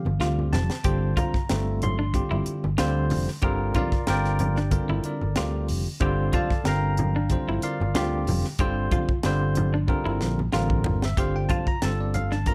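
Lightly reverberant, dark production frames this driving, nocturnal slice of electric jazz fusion in G minor, moving at 93 BPM with a 16th-note swing and resting on a single Gm9 chord. A tight funk drum kit with a high-tuned snare sits up front beside a bell-like tine electric piano, while a round, amped fretless bass with subtle chorus anchors the low end. Very quiet, low-tuned congas played with soft hands and twangy, compressed stabs from a clean electric guitar fill in the groove, and the drums break into fills at 0.2 and 9.9 seconds.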